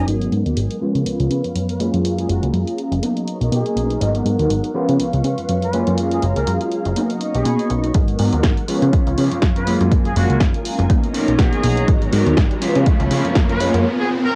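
Filtered disco house at 122 BPM in G# dorian with a swung, sensual and funky feel, cut from a longer piece, where a plucky sawtooth bass and a detuned, chorused polysynth comp ride the sidechain pumping under lush string-machine chords, a dark, slightly broken-up electric guitar riff in the background, and a dry, overdriven drum machine with snare and hi-hat, while a brilliant trumpet section with light vibrato carries the melody from 1.7 s, a punchy electronic kick arrives up front at 7.9 s to launch the build-up, and a riser joins at 10.5 s, all under filter sweeps and a lo-fi home-cassette character.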